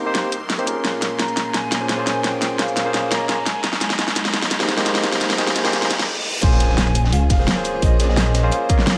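A straight 4/4 liquid drum and bass groove at 172 BPM in Bb dorian opens with a fat-snared, up-front pop kit running a fill through a soulful, melancholic build-up. A barky electric piano through a combo amp and a clear, sidechain-pumped string section hold Cm7, Bbm9 and Abmaj9 chords while a breathy, hollow jazz flute with delay drifts in from a distance, and a filter sweeps across both strings and flute beneath a faint riser and reverse cymbal. After a brief stop, the drop lands at 6.4 seconds with a very quiet impact, a punchy electronic kick, a gritty breakbeat kit tucked in the background, and a deep, rumbling detuned saw bass with tube saturation, all set in a lush hall reverb.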